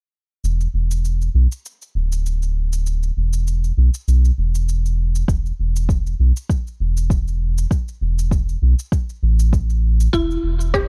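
Organic downtempo with a hypnotic, earthy mood and a gentle swing, cut from a longer piece: a round, deep analog bass with tube saturation, sidechain pumping and a filter sweep carries the music from 0.4 seconds, alongside overdriven electronic cabasa, claves and rim click re-recorded in a large room. A soft, tape-warm electronic kick drum enters up front at 5.3 seconds. A woody, mallet-like FM synth pluck with chorus and digital delay adds brief bright arpeggios from 10.1 seconds as the harmony resolves from Esus4 to Em, all within a dark, dry production.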